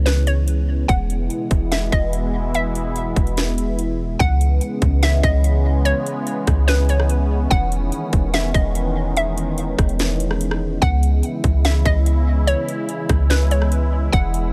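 An airy, detuned sawtooth pad with chorus and sidechain pumping opens this ethereal cloud-rap hip hop cut alongside a deep, round 808-style bass, moving from C#m7 to E and later to Emaj7 in C# minor at 145 BPM with a half-time feel. A hollow, bouncy square-wave pluck carries the melody through chorus, a low-pass filter and tape echo, while an overdriven trap kit sits up front with a hard-clipped kick, sharp snare, rim click and metallic hi-hats. The spacious mood comes from the pad and pluck rather than the room, which stays dry.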